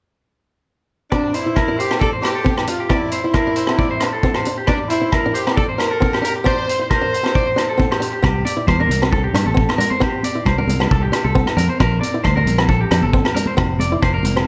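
A punchy horn section with light vibrato carries the melody until 8.0 seconds in this sunny, danceable highlife guitar band groove at 135 BPM in C mixolydian, over a boxy fingerpicked swing acoustic guitar, a twangy, slightly broken-up electric guitar playing arpeggios through spring reverb and tape echo, a gritty, saturated vintage drum kit with a punchy kick, hi-hat and rim click up front, and ringing agogo bells in the background, before a round, dark fingered electric bass arrives at 8.2 seconds and high-tuned, close, dry congas join at 8.5 seconds, all set in a moderate recital hall reverb.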